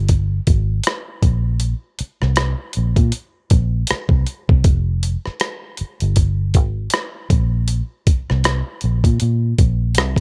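A dry cut from a longer piece sets a soulful, smooth R&B and neo-soul groove at 79 BPM in 4/4, with a 58% swing on the sixteenths. A vintage muted fingered electric bass, dark, round and foam-muted with an amped punch, sits up front from the start, ranging from F1 to Bb2. A gritty, compressed boom bap sampler-style drum kit joins at 0.1 seconds with hi-hat, rim click and a thumpy kick.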